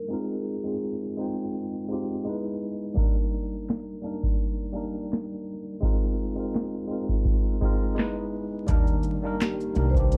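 A booming analog drum machine with a deep kick, tonal snare and metallic hats arrives at 3.0 seconds beneath a worn, slightly out-of-tune tine electric piano with a cassette-tape character, while a mellow soft-mallet vibraphone melody appears briefly at the start and end, a woody pizzicato upright bass enters at 8.7 seconds, and a hollow, flute-like pad drifts in very quietly at 8.9 seconds in this nostalgic lo-fi hip hop excerpt with dark production, vinyl crackle, a filter sweep and light reverb.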